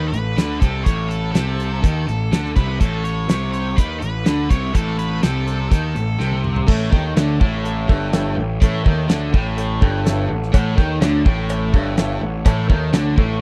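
A dry, close 1970s-style studio sound in a small room frames this confident, sunny classic rock excerpt at 124 BPM, where a damped 70s drum kit with a fat snare and tight kick sits up front beside a growly, fuzz-soaked picked electric bass. A phaser-tinged crunchy guitar in the background and a raw, bright garage guitar share the low riff, while an octave-fuzz lead guitar carries a short, distorted melody until 6.4 seconds. After a drum fill, a brilliant baby grand piano with long sustain enters on an A chord at 6.7 seconds, and a very quiet metallic cowbell joins at 10.5 seconds.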